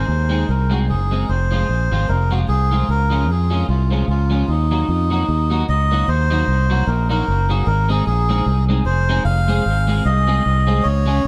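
A reedy, breathy melodica carries the tune up front from the opening second, colored by tape echo, over a slightly broken-up, picked electric guitar with subtle chorus and its own tape echo, while a round, punchy fingered bass sits dark and direct beneath them. This energetic, mischievous ska cut has a swung lilt and moves from its opening section into a second one at 6.1 seconds. Light reverb frames the short excerpt, which is lifted from a longer piece.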